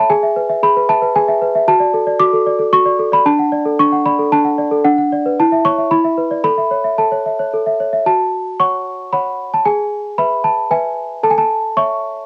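A small celesta plays alone throughout this fragment of a tender, innocent classical lullaby in A major, moving at 114 BPM in a straight 3/4 and tuned to A4 = 439 Hz. Its bell-like yet darkly smooth tone, struck by hard felt hammers and heard up front with a cassette-tape colour, spans D4 to D6. Light reverb and small-room ambience frame the homemade cassette recording, as the opening phrase returns at 8.1 seconds and settles on A major at 11.2 seconds.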